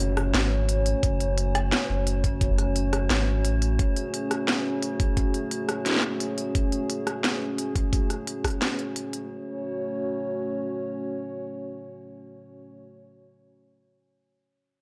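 Spacious and cinematic, this excerpt of half-time drum and bass in F# minor at 174 BPM opens on a dark, nasal analog pad with chorus, 12-bit sampler grit and sidechain pumping that sustains to 12.8 seconds, sounding together with a thick, tube-saturated sub bass until 3.8 seconds, a faint downlifter, an eerie, warbling FM drone with phaser and its own reverb, and a layered kit of cracking snare, rim click and crisp hats re-recorded in a small room, with a knocking electronic kick arriving at 1.0 seconds, all on a gritty cassette-tape recording.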